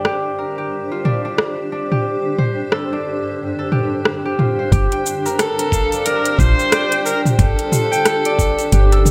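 A bowed kamancheh, rich and focused with vibrato and portamento, enters at 5.4 seconds to carry the melody through tape echo in this earthy, warm organic downtempo passage, cut from a longer piece. It moves at 90 BPM in 4/4 with a 16th-note swing in G minor, over a Gm7 chord that shifts to Fadd9/G. From the start, a bright, ringing concert harp plays fingerpicked arpeggios with its own tape echo, while a cloudy, evolving granular pad holds sustained chords with slow attack, built-in reverb and sidechain pumping. An overdriven, electronic deep house kit sits up front with metallic hats, cabasa, rim click and toms. At 4.7 seconds a round, woody FM bass joins with a dark, decaying tone, alongside a gritty, thumpy sampler-style kick, and the whole recording sits in a light digital ambience.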